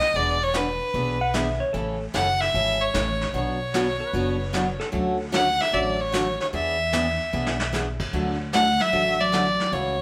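A clear, boxy fiddle with light vibrato sings the melody up front over a vintage brushed drum kit with dark cymbals and a brief fill, as a bright picked dreadnought acoustic guitar with finger squeak and a woody, thumpy pizzicato upright bass join in this cheerful, playful western swing excerpt, while a clean lap steel slides in with volume swells from 1.2 to 5.3 seconds and a dark hollow-body jazz guitar adds a second line from 8.5 seconds, all in a moderate large-studio reverb of a band playing live in one room.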